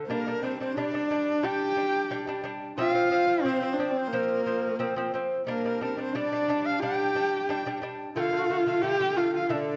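A husky horsehead fiddle carries the melody in this short cut from a longer Mongolian folk piece, its bowed horsehair strings sung with vibrato and portamento and placed close and up front from 0.1 s. The mood is windswept and solemn, moving at a steady 89 BPM in a straight 4/4 in G minor. Beneath the fiddle, a delicate fingerpicked lute with nylon double strings, some doubled at the octave, plays arpeggios from the opening moment. Above both, an airy bamboo dizi with a buzzing membrane adds a tongued second line with its own vibrato. The harmony moves through G5, F5, G5 and D5, and a moderate scoring-stage reverb lends the performance a sense of open space.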